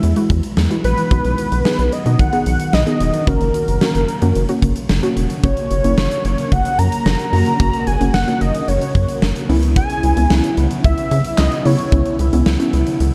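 A thick, detuned unison lead with vibrato and tape echo carries the melody in this wistful, nostalgic synth-pop piece at 111 BPM, over a warbling, lo-fi chorused pluck, a thumb-plucked concert harp playing ringing arpeggios in the background, a rubbery, bouncy square bass up front and a huge arena drum kit with a punchy kick, snare, hi-hat and handclaps. At 5.4 seconds a mellow, vintage organ-like string ensemble enters with sustained chords in the background, and the lead drops out at 12.2 seconds. The chords move from Eadd9 through B and F# to C#m7 in light reverb, and the clip is cut from a longer piece.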